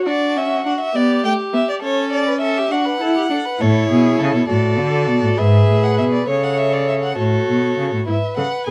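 An intense, up-front cello enters at 3.6 seconds beneath a stately yet lively baroque-style fugue fragment for string quartet in D major, moving at 67 BPM in a straight 6/8, where a full-toned first violin carries the high melody with vibrato and portamento over a shadowy second violin and a close, dark viola, the three upper strings bowed with soft attacks in a dark, lightly reverberant production.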